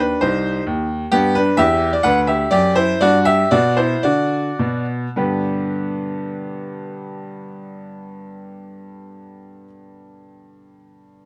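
Elegant and cheerful, this short classical-period piano sonatina in G major, tuned to A4 = 438 Hz, moves in 4/4 with a rubato feel between 101 and 134 BPM as a clear, open, up-front solo baby grand spans from C2 to F#5, slowing down through its opening phrase until about 5.2 seconds before a new section begins, all caught by close, detailed microphones with light reverb in a passage cut from a longer piece.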